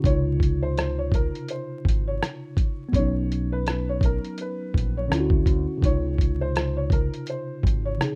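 An unhurried 83 BPM lo-fi hip hop groove in 4/4 with a lazy swing on the sixteenths sets a nostalgic, dreamy mood, carried by an up-front, compressed sampler-style drum kit of thumpy kick, hi-hat and rim click, and a round, dark fingered electric bass. A worn, slightly out-of-tune tine electric piano, softened by cassette tape, low-pass filtering and plate reverb, holds down chords that drift from Dbmaj9 through Cbmaj9 and Dmaj9 before settling back on Dbmaj9 near 5.8 seconds. A felt-muted upright piano with an intimate, thin-felt tone enters at 0.1 seconds with a quiet, close-ranged melody, all wrapped in a rough home-demo mix with light reverb and vinyl crackle in this brief excerpt from a longer piece.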